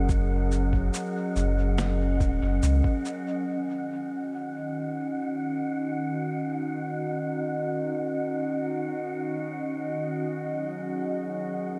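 A warbling, detuned tape-like pad sustains Eb minor chords through a huge ambient reverb in this meditative, hazy ambient dub excerpt in free time, alongside an airy wind-like noise texture, a round sine sub bass that stops at 2.8 s, and a muffled, overdriven, pitched-down electronic kick with a fat snare and cabasa carrying dub echo, before the drums fall away near 3.2 s and the gritty pad and breathy texture drift on to a closing Gb6 chord at 10.2 s.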